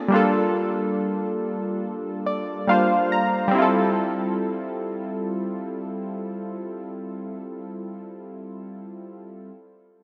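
Detuned, sawtooth-edged analog keys sit up front with a round, warm tone, fast attack and decaying notes, thickened by chorus and a filter sweep as they carry the accompaniment from 0.0 to 9.5 s. This smooth, romantic R&B fragment moves at 70 BPM in 4/4 with a light sixteenth-note swing in F major, with the keys adding a fill from 1.8 to 3.5 s as the harmony shifts from Gm9 to Fmaj9 at 3.5 s. A lush hall reverb and bright 1980s-style digital production give the short passage a glossy, spacious sheen.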